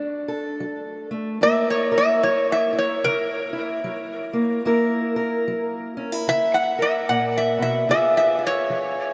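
A metal-body resonator slide guitar carries the melody from 1.4 seconds with a metallic, nasal bite, touched by subtle chorus and a diffuse ambient delay, over a boxy, parlour-style fingerpicked steel-string acoustic guitar in this soulful, gritty swung acoustic country blues excerpt, both up front in a dreamy mix soaked in huge ambient reverb as the harmony moves from a rootless Bm7 to F#7 and then C#7 at 7.9 seconds.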